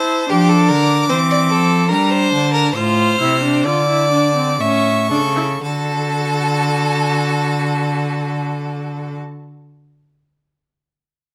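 A baroque-style fugue for string quartet, this short excerpt cut from a longer piece has a serious, driving mood in 3/4 time, with a tempo between 56 and 76 BPM that slows over the first 5.6 seconds. The first violin carries the melody high in its range, its tone clear and focused with vibrato and a close presence. A second violin plays a smooth, even second line beneath it, while a rich viola supplies steady accompaniment in the middle register. The cello enters at 0.3 seconds with the bass line, standing up front with a full, close sound. The harmony moves from D minor through B-flat major thirteenth and D minor over A to an A major chord, arriving on D major at 5.6 seconds as a new section begins. A moderate stone-room reverb gives the bowed strings a resonant setting, and the tuning sits slightly below standard pitch.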